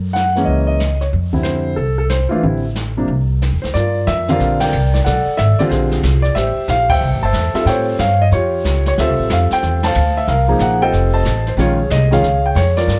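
Warm and swinging, this jazz piano trio excerpt moves at 184 BPM in 4/4 in F major, with a woody, growly upright bass played pizzicato up front and a natural-sounding grand piano carrying the melody through a plate reverb. A distant, roomy brush kit sits low in the mix, its dark cymbals, medium-tuned snare and boomy kick played with brushes. The harmony opens on Gb9 resolving to Fmaj9, then wanders through Gm7, Bm7, A7alt and Dm7 before landing on Bbm7, with band accents at 4.6, 6.9 and 9.8 seconds.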